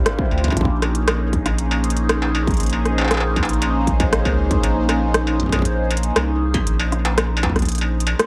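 IDM at 118 BPM in a straight 4/4, melancholic and eerie, in a short cut from a longer piece that moves from Dm11 to Bbm11 under light reverb and a digital ambience. A swirling, nasal, detuned analog pad holds sustained chords through phaser, chorus and sidechain pumping, while a round sine sub bass sits up front and an industrial kit of crisp hats, rim clicks and struck metal runs through tape echo. A distorted electronic kick drives the groove until it drops out at 7.7 seconds, leaving the pad, bass and metallic percussion to carry the final moments.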